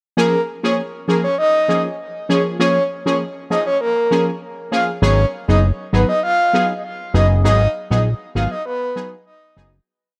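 Lightly reverberant digital ambience frames this short, hypnotic and bouncy dancehall piece at 99 BPM in Bb phrygian, where a breathy, flute-like synth lead with vibrato, chorus and tape echo carries a syncopated hook over punchy, brassy synth stabs colored by chorus and phaser on a Bbm7 chord, until a fat, saturated analog bass with slides enters at 5.0 s as the harmony moves to Abm7, and the whole piece fades out from 7.4 s.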